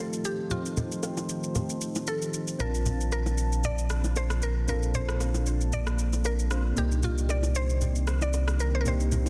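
A woody, bright mallet-like synth pluck carries the melody over soft, mellow electric-piano-like synth keys with chorus and phaser and a dark, evolving ambient pad sitting in the background, opening a deep, late-night amapiano fragment that moves from F7 to Bbmaj7 to Cm9. A layered electronic shaker and rim click arrive almost at once, close and dry acoustic congas and bongos join at 0.5 seconds, and a round sine sub bass enters up front at 2.6 seconds. Light digital ambience surrounds a dense, heavily limited modern mix with a gentle swing on the sixteenths.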